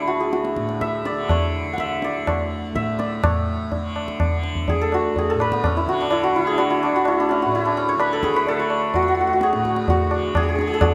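A mellow, shimmering santur carries the melody up front over a bright, buzzing tanpura drone in raga yaman on D, with low-tuned tabla entering at 0.3 seconds with short, dry strokes. This radiant, serene fragment of Hindustani classical music moves in 4/4 at 126 BPM and speeds up throughout, shifting into a new section at 3.2 seconds. The santur's hammered ringing and the tanpura's softly plucked tone sit in a moderate recital hall reverb.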